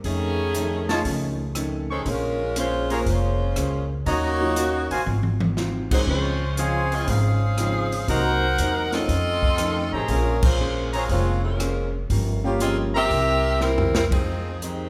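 Dramatic and brassy, this big band swing excerpt moves at 120 BPM in F minor with a firm swing on the eighth notes, cut from a longer piece. A bright, tight saxophone section carries the melody up front with vibrato, while a smooth trumpet section with light vibrato adds stabs from 0.9 seconds until 13.1 seconds. Underneath, a woody, thumpy upright bass played pizzicato and a punchy, polished drum kit with crash, ride, hi-hat, kick, snare, rim click and toms drive the groove, with drum fills around 5.1 and 13.6 seconds and a band accent at 10.3 seconds. A dark, clean hollow-body archtop guitar and a vintage grand piano sitting in the background fill out the accompaniment over a chord progression that lands on Fm7 at the end. The whole band sounds as if recorded in a church or concert hall, with a recital-hall reverb lending an airy depth.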